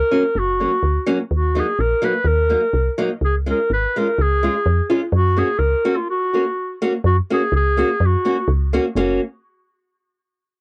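Jolly and festive, this short alpine folk dance excerpt in a loose, rubato two-beat feel has a clear, soft-edged clarinet carrying the melody in a vintage classical style, with a cassette-tape tint to its tone. Beside it, a picked old ladder-braced acoustic guitar with boxy, worn-string character picks out the accompaniment, and a round, dark FM bass adds woody, decaying notes, all three sitting up front. A brief break arrives at 6.1 seconds before a second section from 7.1 seconds, all wrapped in light reverb with the homely feel of a cassette home recording.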